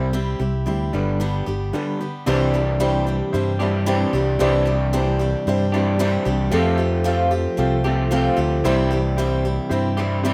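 A straight, steady 4/4 rock groove carries this open-road, nostalgic excerpt, anchored by a round, dark fingered electric bass sitting up front while a bright, boxy picked acoustic guitar with fresh strings adds a swing-style accompaniment. An electric guitar through a small old amp plays a slightly broken-up, shadowy riff colored by harmonic tremolo, and a brilliant, woody, intimate upright piano with audible action noise sits in the background, stepping forward with a short fill from 1.5 to 2.3 seconds as the harmony moves from C and G into Cadd9, Fadd9 and back to C. The sound is dry, with the rough, unpolished character of a home demo mix.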